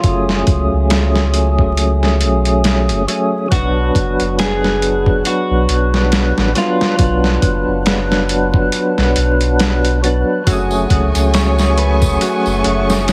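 Heavily compressed with a radio-like sound, vinyl crackle and light reverb, this smoky, melancholic trip hop excerpt moves at 69 BPM in F# harmonic minor, with a gritty, overdriven sampler-style drum kit, thumpy kick and round, deep dub sub bass up front beneath a fat, lightly overdriven tonewheel organ turning through a slow rotary speaker with tremolo and tape echo over F#madd9 and Bm. A dark, slightly broken-up electric guitar picks a quiet melody through dub echo until 9.1 seconds. At 10.5 seconds a lush, bowed violin section, a ringing fingerpicked harp with delay and a faint, saturated tambourine join as the harmony returns to F#madd9.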